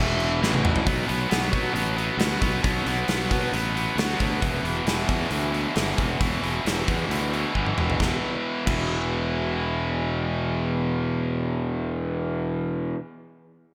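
A straight 4/4 pulse at 134 BPM drives this heavy hard rock excerpt, cut from a longer piece. An overdriven, double-tracked electric guitar plays a bright, picked riff up front from the start to 13.0 seconds, moving from an E5 power chord to Bm at 0.9 seconds and back to E5 at 4.4 seconds. Underneath, a fingered electric bass growls with fuzz and overdrive, its tone both direct and amped. A gated 80s-style acoustic drum kit, set up front in a bright stone room, brings a punchy kick, a medium-tuned snare, hi-hat, toms and shimmering crash cymbals. Its gated reverb cuts each hit short, with drum fills at 0.4 and 7.5 seconds before the kit stops at 8.8 seconds as the second section gets under way. A lush hall reverb and a small room surround the whole, giving the production a glossy, 1980s-style digital sheen.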